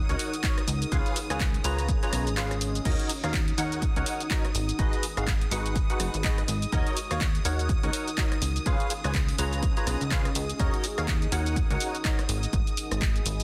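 The recording has a dense, heavily limited modern sound with light reverb, and it is cut from a longer piece of bittersweet, soulful piano house with a swung groove. A tape-warm analog drum machine, re-recorded in a large room, supplies crash cymbal, handclaps, hi-hat, rim click and shaker, while a punchy electronic kick enters at 0.4 seconds and drops out briefly between 2.4 and 2.9 seconds. A plucky, funky analog bass with tube saturation drives the low end, and a hollow, organ-like percussive stab plays the riff through ensemble chorus and digital delay. In the background, a shimmering vintage string machine holds violin chords, and a deep, moody ambient pad adds a mellow, detuned texture with chorus and its own reverb. The bass, stab, strings and pad all pump against sidechain compression as the harmony cycles through Ebm7, Db7 and Abm7.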